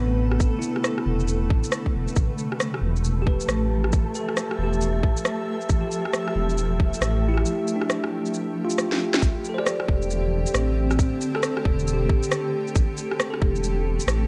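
A dark, detuned saw bass rumbles up front through this melancholic, ghostly future garage excerpt at 136 BPM in A minor, its beating low end pumping under a tight, overdriven kick and a cracking snare layered with rim click and shaker in a small room. A bell-like tine electric piano with tape echo and a blurred granular cloud pad move from Am11 to G13 and back at 9.2 seconds, just after a short drum fill. A breathy, wind-like tuned noise texture drifts in the background from 2.9 to 9.2 seconds, all under light reverb and the sound of cassette tape.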